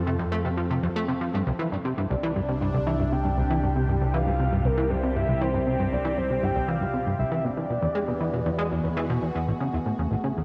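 A punchy, up-front analog bass drives this ambient, sequencer-driven space music, playing a plucky, funky riff with a fast, decaying filter pluck, dressed in lush chorus and delay. Beneath it, a warbling, vintage analog drone sustains low notes with pulse-width modulation and chorus, while a detuned, swirling pad holds sustained chords through phaser and chorus. At 2.1 seconds a soft, round synth lead layered with a sub octave enters with a melody, carrying vibrato, chorus, phaser and delay until 9.0 seconds. The mood is expansive and luminous at 118 BPM in a straight 4/4, with chords moving from F to C, then E7 and finally A at 9.5 seconds. A moderate plate reverb and a dark production frame this short cut from a longer piece.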